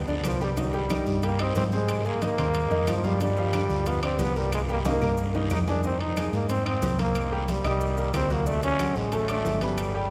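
Fiery, passionate salsa at 183 BPM in C minor, where an up-front growling trombone solo with vibrato and scooped, gritty notes rides over a round, dark hollow-body electric bass and a clear, short-sustain baby grand piano, while bright hard-hand congas, ringing metal-shell timbales, woody distant claves, a raspy guiro and grainy maracas fill out the percussion, a drum fill lands between 4.9 and 5.8 seconds, and the whole excerpt is bathed in a cavernous cathedral reverb.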